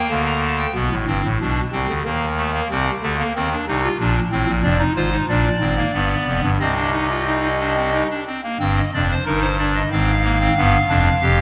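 A pipe organ, voiced with a hollow clarinet reed stop, opens this short cut from a longer baroque-style three-part fugue, sounding alone and up front from the first moment. The mood is driving and solemn, moving at 92 BPM in a straight 3/4, and the tonality settles into C minor from 4.6 seconds. The solo stop carries chiff at the start of its notes and a tremulant, with baroque voicing across a span from F1 up to Bb5. The harmony passes through chords such as G7 and Cm before a fresh section at 8.6 seconds turns toward Fm/Ab and back to G7. A scoring-stage reverb with a 1.8-second decay surrounds the organ in a wet, spacious room until the passage breaks off at 11.4 seconds.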